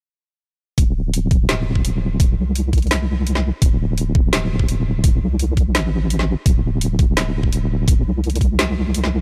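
A knocking electronic kick sits up front in this tense, heavy half-time drum and bass passage at 169 BPM, entering at 0.8 seconds together with a deep, dark wobble bass of detuned square and sine tones, compressed and thickened with chorus, and a layered kit of woody snare and bright hi-hats that, like the kick, carries overdrive, all in a dry mix.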